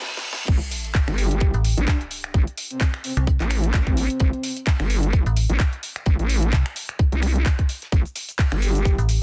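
This aggressive, swaggering bass house excerpt opens with a reverse cymbal and sub drop riding over a house drum fill of crash, snaps, claps, hi-hat, shaker and a cracking, tape-tinged snare, all in 4/4 at 129 BPM with a 16th-note swing in A minor. The drop lands at 0.5 seconds on an A5 chord with an impact. A tight, up-front electronic kick arrives alongside a nasal, resonant vowel-sweep wobble bass carrying chorus, overdrive and sidechain pumping, while a very quiet, dry and dark damped 70s kit adds hi-hat and a fat snare underneath. At 1.2 seconds a breathy, flute-like synth lead enters with a soft attack, vibrato, subtle chorus, cassette tape character and delay, and it returns briefly near the end. From 1.5 seconds a metallic, digital FM bass with decaying notes joins the low end, also pumping against the kick. The mix is dense and heavily limited, with little reverb and a high-pass filter.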